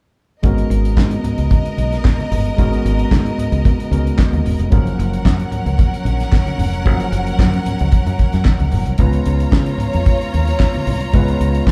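A dry, up-front 70s drum kit with a fat snare, tight kick and handclaps drives this danceable disco cut from a longer piece, joined by a punchy, foam-muted fingered bass, a barky, overdriven tine electric piano through a combo amp, a lush, bowed string section with vibrato as the second line, and very quiet, low-tuned congas, all sharing a large studio room as the chords move from G#m11 to F#maj7 to C#7.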